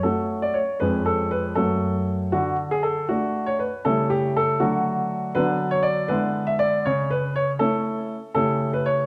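Cheerful and graceful, this short passage, cut from a longer classical-period piano sonatina, moves in a lilting 6/8 with a flexible, rubato feel. A solo concert grand piano carries the whole 9.1 seconds, sounding up front, open and rich in deep bass, reaching from E#2 up to E5. The harmony opens on F-sharp minor shadings before settling into a brighter major home from 5.3 s, passing through chords such as D, B minor over D and E7 over D along the way. A wet recital hall reverb with a 1.3-second decay surrounds the instrument, and the overall production leans dark and warm. The result feels intimate yet spacious, a gentle glimpse of a poised, elegant piece.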